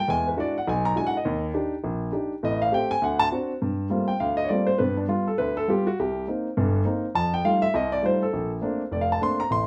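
A warm grand piano plays alone and up front through this short jazz excerpt, cut from a longer piece and running to 9.7 seconds. The tempo is a brisk 204 BPM in 4/4 with a swung eighth-note feel, and the key is G minor, giving the music a cool, late-night mood. The piano spans a broad range, from deep bass notes at F1 up to C6, filling both low and high registers on its own. The harmony moves through rich extended chords, opening on E9 and passing through Ebmaj7, Am7b5 and D7 before a second phrase begins at 3.6 seconds on Gm11 and travels through G7, Cm7 and F9 to settle on Bbmaj9. A moderate club reverb with a short decay places the instrument in an intimate room.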